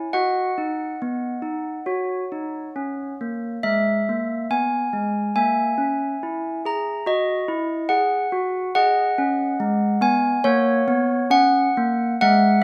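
Handbells ring out alone in this brief classical tune, their hard clappers striking clear, bright tones that sit up front across a range from G#3 to A#5. The mood is serene yet festive, moving at an unhurried 70 BPM in a straight 4/4. The harmony steps through B, F#, E/G#, A#dim, D#m, G#m and F#/A#, each chord arriving roughly every couple of seconds. A moderate recital hall reverb lets the airy, bell-like tones bloom around close, detailed microphones. The 12.6-second passage is cut from a longer piece, with the final F#/A# chord arriving at 10.4 seconds.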